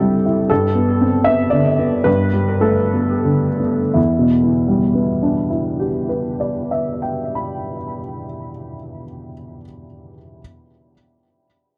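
A worn, woody upright piano plays alone in this reflective, wistful neoclassical minimalist excerpt in E minor, slightly detuned to A4 = 436 Hz and sitting up front with a touch of tape echo, moving in a rubato 3/4 between 84 and 123 BPM, slowing over the first 4.0 seconds as a Gadd9 chord gives way to Em7, all captured in a close, dry 1970s-style studio sound with a moderate booth ambience.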